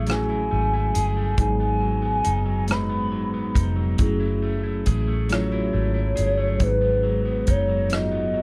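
Slow six-eight R&B at 46 BPM in F# dorian with a late-night, yearning mood, where a smooth, gliding portamento lead sings the melody through chorus and slapback echo over a twangy, slightly broken-up electric guitar second line, a mellow tine electric piano moving between F#m9 and G#m7, a round, foam-muted vintage bass and a tight soul drum kit of hi-hat, kick and rim click that plays from 0.1 to 8.1 seconds, all set in a dark, small-room production.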